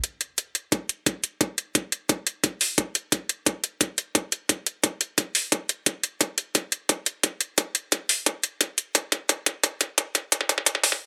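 Metallic electronic hi-hats open this aggressive, futuristic drum and bass excerpt at 0.0 seconds, running at 175 BPM in a straight 4/4 feel. A layered, knocking electronic kick drum joins at 0.7 seconds, and from there the whole passage works as a build-up. A drum fill arrives at 6.2 seconds and carries the kit to the close of the clip. Both drum parts sit up front and carry the character of a small room, with a high-pass filter thinning the kick and its room sound. The production is dark, warm and dry, with little reverb.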